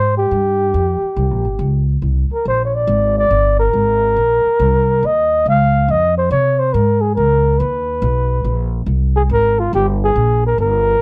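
Set in a dark production with light reverb, this smoky, late-night fragment of small-group jazz swings at 140 BPM in C minor, with a breathy, whispered flugelhorn playing an intimate, vibrato-laced solo melody up front over a woody pizzicato upright bass, both sounding together for the full 11 seconds as the harmony drifts through Gmadd11, Abadd9 and Dbmaj7 before settling on C5.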